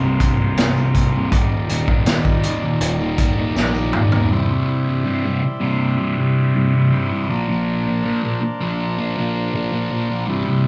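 A kaleidoscopic, hypnotic slice of psychedelic rock, cut from a longer piece, moving at an unhurried 80 BPM in a straight 4/4 and tuned a touch flat of standard pitch. A double-tracked fuzz guitar sits up front with a distorted riff colored by phaser, while a buzzy vintage combo organ holds sustained chords behind it, softened by spring reverb. In the opening stretch an overdriven, fuzzy picked bass growls low, a very quiet, jingly tambourine shimmers in the background, and an acoustic vintage drum kit plays with a tight kick, a medium-tuned snare and a rolled-off top end, ending that passage with a drum fill from 3.6 seconds. At 4.3 seconds the bass and drums drop away, leaving guitar and organ to carry the second passage on their own. The harmony drifts from C7sus4 and Ebmaj7 to C and Bbadd9, and the whole band sounds as if it is playing live together in a large studio room with a moderate reverb tail.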